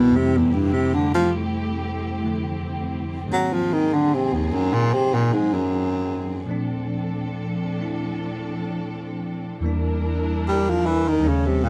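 Moderate studio reverb gives this short cut from a longer jazz ballad the feel of a band playing live in one room, with the baritone saxophone close-miked and up front. The mood is wistful and melancholic, moving at a slow 76 BPM in 4/4 with a gentle swing on the eighth notes. The mellow baritone saxophone carries the melody as a solo for the full 11.7 seconds, its subtone, soft attack, light vibrato and scooped notes giving it a breathy, intimate jazz voice. A bright, bell-like tine electric piano sits beneath it with clean, direct accompaniment, while a lush bowed string section holds sustained chords with expressive vibrato and a smooth top. The harmony drifts through Fmaj9, G#9, Bbmaj9 and Em7b5, keeping the passage unresolved and reflective.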